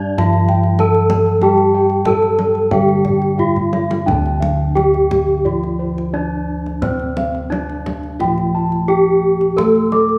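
This is a Javanese gamelan passage in D slendro at 88 BPM in 4/4, with uneven beats and a shimmering, serene mood, cut from a longer piece. Up front, a bronze metallophone carries the melody with a wooden mallet, its paired tuning producing shimmering beats in a ringing, mid-forward tone. Beneath it, a second metallophone plays accompaniment with padded disc mallets, sounding mellow, soft, close-miked and dry. A higher metallophone adds airy arpeggios until 4.0 s. Bossed gongs give a round, bright bass, while another set of bossed gongs plays arpeggios with padded beaters in a mellow, soft, airy voice. The kendang adds deep, hard-handed percussion with a fill from 3.4 s that leads into a second passage at 4.1 s, all set in a recital-hall reverb with a touch of small-room ambience.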